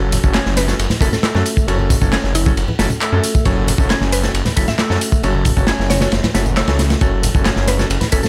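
Raw and energetic, this short breakbeat excerpt at 135 BPM in F# minor rides a gritty, saturated acoustic break kit with tight kick, snare and dark ride up front, an overdriven house kit of handclaps, hi-hat and tambourine, low-tuned congas and a thick, menacing detuned saw bass under clear grand piano stabs, a fat organ riff with slow rotary speaker and sampler grit, and a woody, chorused mallet-like synth pluck melody entering at 0.6 seconds, all on a single F#m chord.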